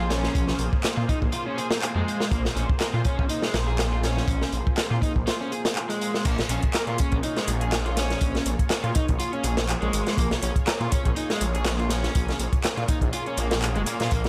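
Gritty, energetic breakbeat at 122 BPM in Bb minor, with a lightly swung 16th feel and a dry, close sound, cut from a longer piece resting on a Bbm7 chord. A crunchy, saturated acoustic breakbeat kit with a tight kick and rolled-off top sits up front alongside a swirling, thick detuned saw bass with phaser, while an overdriven, double-tracked electric guitar plays a riff with tape echo and 12-bit sampler grit. A bright, lush pad with chorus and sidechain pumping holds sustained chords in the background, an electronic kit of handclaps and metallic hats joins at 0.8 seconds, and the drop arrives at 6.2 seconds.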